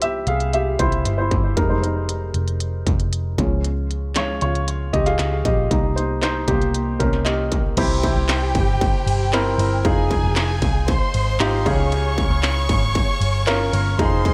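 An up-front baby grand piano with analog delay carries this bittersweet, earnest piano-driven pop excerpt at 116 BPM, taking a solo over the first 7.8 seconds as the chords move through C, Fm7, Db and Cm7. Beneath it, a round, punchy, foam-muted picked electric bass pairs with an electronic industrial drum kit: distorted kick, clanging snare, crisp hats, handclaps and cymbals. At 7.8 seconds a lush, vibrato-rich bowed violin section enters as a second line, all set in an echo-heavy mix with light reverb.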